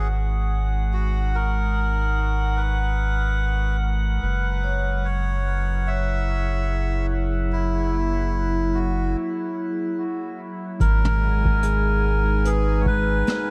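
A hazy, spacious ambient dub excerpt at 73 BPM in G# minor with a light 16th-note swing, where a reedy, breathy melodica carries the tune through dub echo over a warbling, lo-fi pad with chorus and a filter sweep, a round, up-front sub bass with tube saturation and a glassy harmonics texture of drifting overtones, while a metallic vibraphone in the background adds echoed arpeggios from 4.6 s, and after a break a very quiet analog electronic kick and a vintage brushed drum kit with a rolled-off top enter at 10.8 s.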